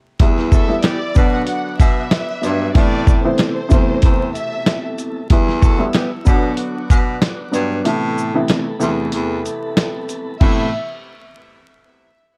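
A gritty, up-front sampler-style drum kit drives this reflective boom-bap hip-hop excerpt at 94 BPM in A dorian. Its thumpy kick, medium-tuned snare, hi-hat, shaker and crash are compressed and re-recorded in a small room, with a light swing on the sixteenths. Beneath it, a clear baritone saxophone carries the bass line in a low register with subtone and vibrato, sounding distant and roomy. A worn, woody, slightly detuned upright piano plays accompaniment with a cassette-tape character, and a very quiet tonewheel organ holds smooth sustained chords with key click and a fast rotary speaker through Em, Bm and Amadd9. A dark, bowed studio violin section enters at 0.5 seconds with a soft-attack melody, while a background horn section with a smooth top adds jazz-style stabs touched by digital delay, returning from 5.6 seconds. The production is dark and warm, with vinyl crackle over the small room ambience.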